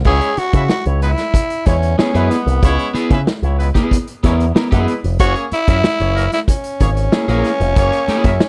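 Funk in C# dorian at 93 BPM with a driving, hypnotic feel, where a growling, raspy tenor saxophone carries the melody over a punchy envelope-filtered picked bass and a vintage drum kit with dark cymbals and a pumping small-room sound, while a clear horn section with octave doubling and slapback echo adds a second line, a twangy, slightly broken-up electric guitar with spring reverb joins at 2.0 s, and the harmony moves from C#m7 to F#9.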